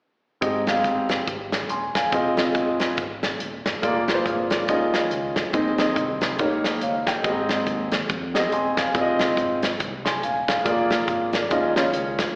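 This jubilant, uplifting uptempo gospel passage at 141 BPM opens at 0.4 seconds with a deep-bodied concert grand piano up front, an acoustic studio drum kit with a punchy kick, medium-tuned snare and hi-hat, and a bright, growly fingered electric bass sitting in the background, all playing through to about 12 seconds. Swung eighths drive the Ab major progression of rich seventh and suspended chords, while slapback echo colours the piano and drums. The whole sound carries the feel of a live gig through the venue's PA, with recital hall and small room reverb and a thin AM radio tint.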